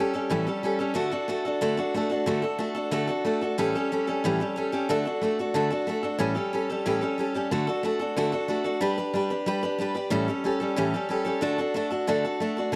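Rock in D major at a brisk 184 BPM in straight 4/4, this rowdy, rollicking short cut from a longer piece features a lone picked steel-string dreadnought acoustic guitar, bright and full-bodied with fresh strings and audible finger squeak, sitting up front in a small room with light reverb as it bounces between A7 and D chords, with a brief turn to G late on.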